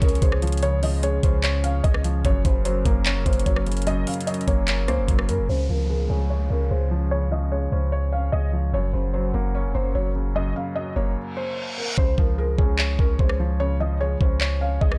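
Triumphant yet dreamy, this half-time trap excerpt at 148 BPM in Db major sets a soft, felt-muted upright piano melody over a dark baby grand's accompaniment, both low-pass filtered, with a moody, chorused analog pad in the background until 11.1 s, a deep, sine-toned 808 bass up front, and a knocking trap kit with metallic hats and handclaps that drops out at 5.4 s while a filter sweep, downlifter and reverse cymbal fill the gap until the kit returns at 12.0 s with its hi-hats muted.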